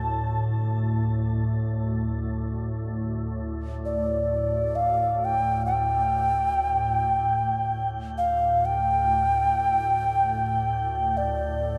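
The recording has a dark, warm production set in a wet church reverb with a 3.3-second decay, which gives this short passage, cut from a longer piece, a haunting and spacious air. It is meditative world music in free time, unfolding as one continuous section of 11.8 seconds. A breathy alto ocarina carries the melody between D5 and A5, its clay tone marked by vibrato and a crisp attack, close-miked and up front, with shimmer reverb and a diffuse ambient delay trailing its phrases. Beneath it, a calm, organ-like drone sustains from D2 to A2, built from detuned sine tones in unison with a slow attack and long release. Its ensemble chorus lends a vintage, warbling quality, and its own reverb adds depth as both parts sound together from start to finish.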